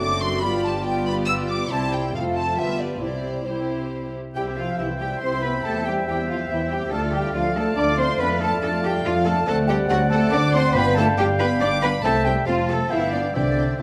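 A quick, lively and graceful classical-period movement for symphony orchestra in C major at 140 BPM in 3/4, cut from a longer piece, with a dark, intimate violin section carrying the melody while a second violin section, airy silver flute, clear clarinet and, from 4.3 seconds, a warm oboe weave second lines above a mellow bassoon and floating violas. Distant French horns hold sustained chords over a close double bass section and cello section with vibrato, and timpani struck with hard mallets punctuate at 10.8 and 13.4 seconds. The soft, sul tasto strings sit in the reverb of a recital hall, and the harmony moves from a G7-to-C cadence through Dm and D7 back to G7.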